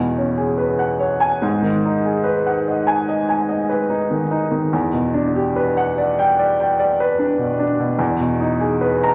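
Hazy and serene, this short passage from a longer classical piece is an impressionist study for solo piano at 72 BPM in 4/4, played with a free, rubato feel. A baby grand carries everything alone across the full 9.1 seconds, its tone clear and open with a long sustain, and it sits up front in the mix. The part ranges from E2 up to A#5. The harmony moves through colourful chords: E69 at the start, G#m7 at 1.4 seconds, Em9 at 4.7 seconds and finally G#m/E. A wet recital hall reverb surrounds the piano, and a layer of vinyl crackle gives the recording a faintly aged, dreamy surface.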